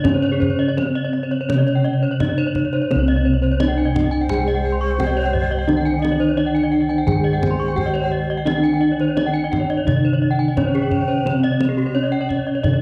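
Brilliant and ceremonial, this Balinese gamelan passage, cut from a longer piece, sets a mellow bronze metallophone melody played with padded mallets over a darker, smooth metallophone accompaniment. Two horn-mallet metallophones spin ringing arpeggios with shimmering beats from their paired tuning, while round, close-miked bossed gongs carry the bass and a deep kendang is played with soft hands. From 3.6 seconds a breathy, low bamboo xiao adds an expressive second line with vibrato, all set in a dark production with a reverberant recital-hall sound.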